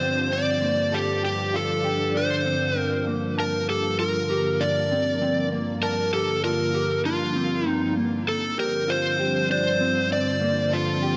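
Ethereal and haunting, this dream pop fragment sets an overdriven slide guitar melody with delay over silky, warbling string-machine chords thickened by ensemble chorus and dark, clean electric guitar arpeggios touched with subtle chorus and delay, all resting on a single Gm7 chord for its 11.2 seconds and bathed in a long plate reverb.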